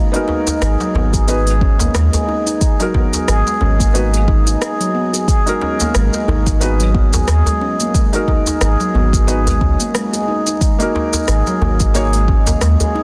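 Mystical and hypnotic, this organic downtempo passage, cut from a longer piece, sways on a swung sixteenth-note feel in 4/4. A bright, airy stainless-steel handpan opens the passage from the very start with ringing, meditative arpeggios played with sharp finger strokes and trailed by digital delay, sitting up front. Beneath it, a soft, felt-muted upright piano adds intimate accompaniment with short sustain and audible action noise, its pumping sidechain and delay giving it a gentle pulse. The groove comes from an organic electronic kit of smooth, overdriven hi-hat, rim click and shaker, joined by a tight, cracking djembe heard close and dry, while a deep, layered electronic kick arrives at 1.1 s. A round, sine-like sub bass with a fast attack holds the low end, sustained and pumping, as the harmony rests on G#m7 before moving to D#m/G# at 10.6 s, all set in a small room with light reverb and a dense, heavily limited modern master.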